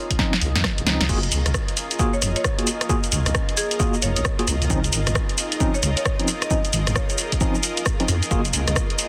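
A swung two-step garage groove at 133 BPM in Gb lydian drives this soulful, bouncy excerpt, with a punchy kick and an up-front analog drum machine of punchy snare, hi-hat, rim click, shaker and crash re-recorded in a large room, a deep wobbling sine-and-saw bass pumping under the beat, worn tine electric piano stabs through tremolo and tape echo that open with a filter sweep while a drum fill leads into the drop at 1.1 seconds, a woody marimba melody entering at 2.1 seconds in the background, and an airy, breathy pad with sampler grit blended with a blurred granular cloud pad sustaining Dbmaj9 and Gbmaj9 chords over a dense, heavily limited master.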